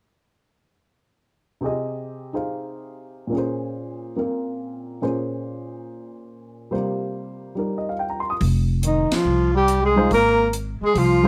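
A swinging 142 BPM pulse in 4/4 carries this cool, small-group jazz excerpt in F minor, opening with a dark baby grand piano alone from 1.6 seconds, its mellow, intimate voicing marked by audible action noise and short sustain as the chords move from Fm7/C through Bbm7 to C7sus4. At 8.4 seconds the woody pizzicato upright bass and a compact cocktail drum kit with a high-tuned snare, punchy kick and rolled-off top enter on Fm7, joined by a buzzy, thin trombone with metal mute as a second line and a breathy, whispered alto saxophone carrying the melody up front. A band accent lands at 9.0 seconds under light reverb.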